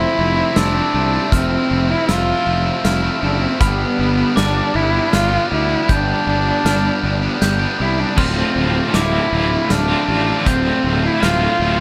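A straight-feeling 3/4 pulse carries this cinematic, melancholic post-rock fragment, cut from a longer piece and moving through Fmaj7, G7 and Dm7. A loose indie drum kit enters at 0.6 seconds with a punchy kick, a medium-tuned snare, hi-hat and dark crash cymbals in a pumping small room. Up front, a fuzz-laden fingered bass growls low beneath a bright, picked distorted electric guitar riff. A nasal, woody solo cello sings the melody with vibrato and portamento through an analog delay, while a very quiet, twangy pedal steel holds sustained chords with volume swells and slide. Bell-like glockenspiel arpeggios ring softly in the background through their own delay, and at 8.2 seconds a cranked stack guitar adds a second overdriven riff with tremolo, set back in the mix.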